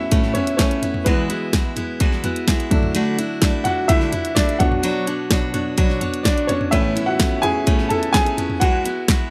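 Piano-driven pop in A major at 127 BPM, this anthemic, warm cut from a longer piece features an upfront upright piano with a woody, boxy tone and short sustain, soloing across the whole span from 0.0 to 9.3 seconds over add9 chords moving from Aadd9 through Eadd9, Dadd9 and Bmadd9. A picked steel-string dreadnought acoustic guitar plays a full-bodied riff beneath it, while a punchy, layered electronic pop drum kit with a fat snare, kick, hi-hat, toms and handclaps drives the straight 4/4 feel. Light reverb and digital ambience give the mix a touch of space.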